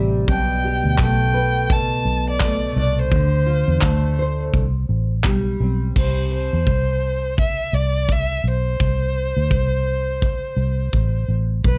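A double-tracked nylon-string guitar, dark and full-bodied in its fingerpicking, opens this heartfelt, carefree acoustic pop excerpt alongside a round, foam-muted vintage electric bass, with a bowed violin carrying a smooth, vibrato-laden melody and a studio drum kit of punchy kick, crash cymbal and handclaps joining at 0.3 seconds. The guitar drops out at 6.5 seconds, shortly after the harmony gives way to a chordless stretch at 6.0 seconds, as bass, violin and drums carry on through a lightly reverberant, gently swung groove until 11.8 seconds.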